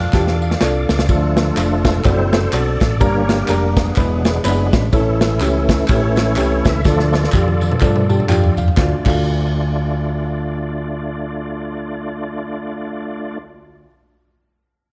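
A reedy, key-clicking tonewheel organ sits up front in this fervent, solemn uptempo gospel excerpt, its fast rotary speaker and chorus vibrato colouring a solo that runs from 1.1 to 8.8 seconds over a minor-key progression in a swung 4/4. A tight saxophone section offers only a brief background phrase at the very start, while a woody upright piano adds fills and a round, dark hollow-body electric bass anchors the low end. A punchy studio drum kit with bright cymbals, plus compressed handclaps and tambourine, drive the groove until 9.2 seconds, all in light reverb with a faint mains hum.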